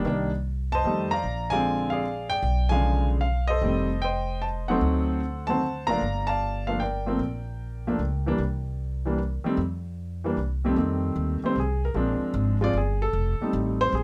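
Sophisticated and swinging, this jazz piece in 3/4 moves at 151 BPM in F mixolydian, pairing a concert grand piano on the melody with a pizzicato upright bass, both placed up front. The piano sounds intimate and natural, with deep lows and audible action noise, while the gut-string bass has a woody, thumpy tone, all captured by close, detailed microphones with light reverb. The harmony passes through colors such as Bdim7, D7b9 and Gm7, and at 10.8 s the piano takes a solo that carries through to the end of this 14-second fragment of a longer piece.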